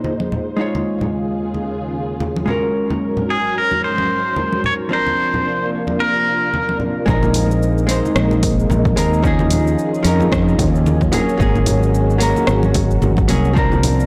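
A clean, up-front pedal steel guitar carries the melody between 3.3 and 6.8 seconds, played with fingerpicks and slide, with volume swells and a touch of delay giving it a gentle glow. This smooth, sunny sunset chillout moves at 111 BPM in 4/4 with a swung sixteenth-note feel. Underneath, a dark, compressed hollow-body jazz guitar comps through a digital delay, while a silky string machine holds slow-attack chords, softened by phaser and ensemble chorus. Bright, saturated congas played with soft hands join a layered, overdriven deep house kit of hi-hat, rim click and shaker, and at 7.1 seconds a round, up-front fretless bass and a punchy electronic kick arrive. The harmony drifts through suspended ninth chords such as Bb9sus4, Eb9sus4 and Ab9sus4, and the whole excerpt sits in light reverb with a blown-out, overdriven overall sound.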